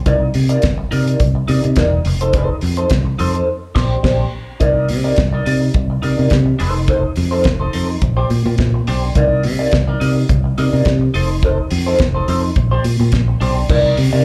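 Heard as a live gig through the venue's PA, this short cut from a longer disco piece sits in a roomy club reverb, and its mood is sultry and glamorous in a straight 4/4. A damped 70s drum kit sits up front from 0.1 seconds, dry and acoustic, with dark crash and hi-hat cymbals, a fat snare and a tight kick. Beside it, a fingered electric bass sounds round, direct and warm, also placed up front. An electric guitar at the edge of break-up plays accompaniment in a one-octave range from D4 to D5; it is picked, compressed and slightly gritty, colored by wah and a slapback echo. The whole band hits an accent from 3.5 to 4.6 seconds to close the opening section, then the longer second section cycles through the same Cm9, F7 and Bb69 changes.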